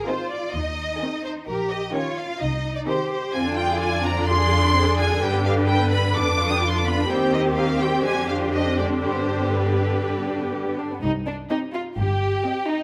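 Lush, up-front first violins carry the melody of this restless, urgent classical-period movement for string orchestra in C minor at a quick 127 BPM, over smooth second violins, rich violas and focused cellos, while the double basses anchor the bass with a soft attack and portamento, the sections sharing a moderate recital-hall reverb in a passage cut from a longer piece that arrives on C minor at 11.0 seconds.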